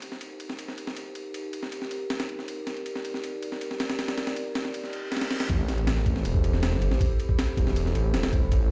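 Washed in a large studio reverb and heard as if through a big sound system in a bare room, this nostalgic, frenetic drum and bass and jungle fragment opens with a warbly, lo-fi tape-like pad holding sustained chords under a gritty, compressed breakbeat sampler-style kit with a thumpy kick and high-tuned snare, before a reverse cymbal and sub drop sound in the background from 4.9 seconds and a thick, menacing detuned saw bass with tube saturation arrives up front at 5.5 seconds.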